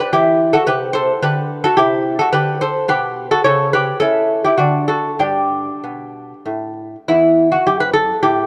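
A solo lute, fingerpicked and placed up front, carries this brief classical excerpt. It is a baroque-style dance in G major and 3/4 time. The mood is serene, the tempo drifts between 94 and 111 BPM, and the playing has a rubato feel. The gut, double-strung courses give a mellow, delicate tone, and some of the strings are octave-doubled. The harmony moves from Em through Am7/C and A7/C# to D and G, then settles on a bare E5 at 7.1 seconds as the opening phrase begins again. A moderate plate reverb with a 3.5-second tail surrounds the lute, and the piece is cut off at 8.5 seconds.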